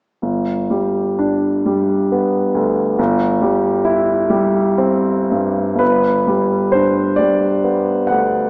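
Heard through a small speaker and set in a moderate concert hall reverb, this serene, dreamy romantic nocturne fragment for solo concert grand piano drifts in a rubato 6/8 at about 36-46 BPM in G major, its up-front, open tone and deep bass carrying a long sustain from G1 to F#5 as the harmony moves from G to C over G at 3.0 seconds and settles back on G at 5.8 seconds, where a new section begins.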